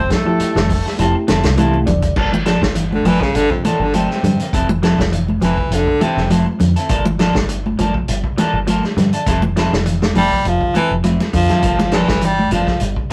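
An intense, defiant afrobeat excerpt in G dorian at 101 BPM opens with a breathy, whispered trumpet carrying the melody with slapback echo over a raspy tenor saxophone line, both lasting only the first second, while a clean picked guitar plays spring-reverbed arpeggios, a second clean guitar adds stabs, and a deep, round dub bass, a vintage drum kit with a punchy kick and dark cymbals, and thick-skinned congas set a lightly swung groove between Fmaj7 and Gm9. A mellow, reedy electric piano accompanies and plays a fill before stopping at 2.1 seconds. The smooth-topped, up-front baritone saxophone then takes a solo in two passages, from 2.9 and again from 10.2 seconds, with a short drum fill along the way, all in a rough rehearsal-room sound with moderate reverb.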